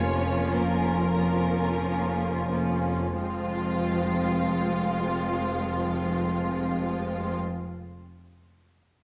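An expressive violin section sits close and up front on a second line between C4 and F4, while a more distant violin section carries the melody above it from F4 to Db5 in this elegiac, yearning slow movement for string orchestra in F minor. Lush violas, smooth cellos on F2 and an even double bass section on F1 fill out the bowed, vibrato-rich texture in rubato 3/4 at 39-54 BPM, slowing over the first 3.2 seconds as the harmony moves from Bbm/F to Fm. A moderate scoring-stage reverb gives the strings a spacious studio glow in this brief passage cut from a longer piece.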